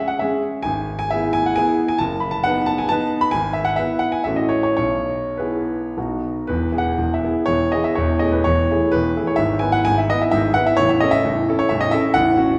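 This is a classical, romantic triple-time dance for solo grand piano in 3/4, cut from a longer piece and lasting about 12.6 seconds. The mood is proud and rustic, with dotted rhythms and a rubato feel that lets the tempo range between 98 and 141 BPM. In E major and tuned to A4 = 439 Hz, the piano spans A0 to B5 with a warm, smooth, vintage tone that sits up front. The harmony moves through E/G#, B/F# and F#m/A before settling on B at 6.0 seconds. A new section opens at 6.5 seconds on E, passes through Amaj7/E, and ends on A. A wet recital hall reverb, like that of a church or concert hall, surrounds the instrument with a 1.4-second tail.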